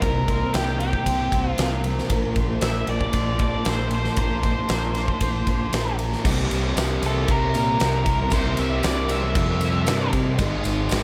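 Lightly reverberant, this blissful, wistful cut of shoegaze and dream pop rock is driven up front by a huge arena drum kit with a fat snare, punchy kick and bright cymbals, over a growling, overdriven fingered bass. A picked octave-fuzz lead guitar carries the melody with slapback echo, while a dark, warbling tape-like pad holds nostalgic sustained chords. In the background sit a thick fuzz guitar riff, a lo-fi raw garage guitar with reverse reverb, and a twangy, slightly broken-up guitar through a small old amp playing arpeggios until 6.3 seconds. A very quiet, double-tracked sludgy distorted guitar joins at 6.2 seconds, followed by a jingly tambourine at 6.3 seconds.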